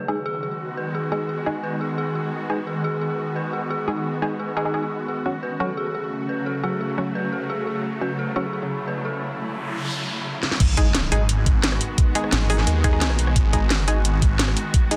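A dense, heavily limited mix with light reverb carries this tense, dark excerpt of technical drum and bass at 174 BPM in G# phrygian. It opens on a swarming, granular drone, a nostalgic lo-fi pad in the background, an eerie, inharmonic FM bell playing arpeggios through delay, and muted dub chord stabs, with the drone, pad and bell pumping under sidechain. An electronic noise sweep builds from 9.5 seconds, and a drum fill at 10.4 seconds leads into the drop at 10.6 seconds. There, an up-front knocking kick and a kit of cracking snare, metallic hats, rim clicks and crash hit alongside a swirling, thick phased saw bass with tube saturation. A brief nasal, resonant vowel-sweep wobble bass cuts in at 12.3 seconds. Across the excerpt the harmony moves from G#m7 to F#m at 5.1 seconds and returns to G#m7 at the drop.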